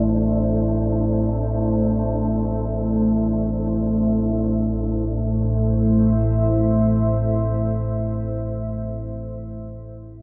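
A deep, moody pad of detuned sawtooth voices with a sub octave holds sustained A minor chords up front, its chorus and slow attack giving it a shimmering, shadowy weight until it ends at 9.3 s. Beneath it, an ominous, rumbling drone sits low and prominent, while a breathy, wind-like tuned noise texture drifts in the background until 4.8 s. In free time and soaked in plate reverb, this excerpt of dark ambient drone feels unsettling and dreamlike.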